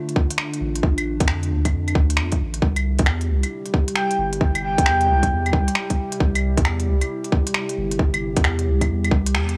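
A wistful, nocturnal future garage excerpt with a swung feel, where a warbling, detuned tape-like pad pumps under chorus and phaser over a deep, round dub sub bass, tight up-front electronic kicks and a crisp kit of claves, finger snaps and hi-hats, while a breathy, flute-like synth lead with vibrato and analog delay appears briefly at 4.0 seconds before the band accents a break at 9.3 seconds, all in a dry, gritty, saturated recording.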